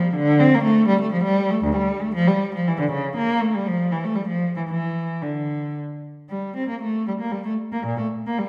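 Set in a wet recital hall reverb heard from further back in the room, this short cut from a longer baroque-style suite movement for unaccompanied cello moves in a grave, flowing 3/4 at 109-127 BPM with rubato, as one player up front bows a rich, expressive line from D2 to C4 with vibrato, soft attacks and portamento.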